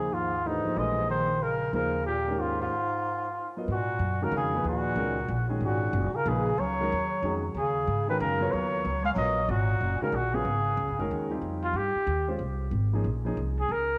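Set in a moderate echo-chamber space, this hypnotic, spiritual modal jazz excerpt swings in 3/4 at 186 BPM: a dark, distant trumpet with light vibrato carries the melody over a breathy bass clarinet second line with scooped notes and slapback echo, a warm grand piano comping sus chords and a woody pizzicato upright bass up front, with a break at 2.7 seconds before the music settles into G# dorian at 3.7 seconds, and the trumpet takes a solo from 11.4 seconds.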